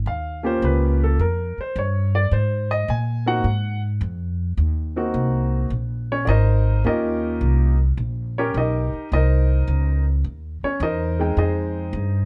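Light reverb gives this recording a close, natural space with a softly rounded top end, and both instruments sit up front. It is a short cut from a longer jazz piano trio piece in Eb mixolydian, swinging at 106 BPM in 4/4 with a warm mood. The pizzicato upright bass opens at 0.0 seconds with a woody, growly, dark tone from its steel strings. The grand piano carries the melody from 0.1 seconds, its natural timbre ringing across a middle-to-upper register. The harmony moves through Eb9 and Ab9, returns to Eb9, then turns to a tense C7#9 before reaching Fm7 at 11.4 seconds.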